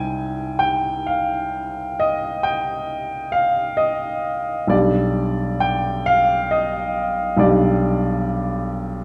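A wet, large studio reverb surrounds a warm, open baby grand piano whose long sustain gives this short fragment a lingering glow. The solo piano plays a mournful, yearning romantic nocturne in C minor, moving in a slow, rubato 12/8 at about 44 dotted-quarter beats per minute. The harmony rests on C minor before shifting to G over B at 4.7 seconds.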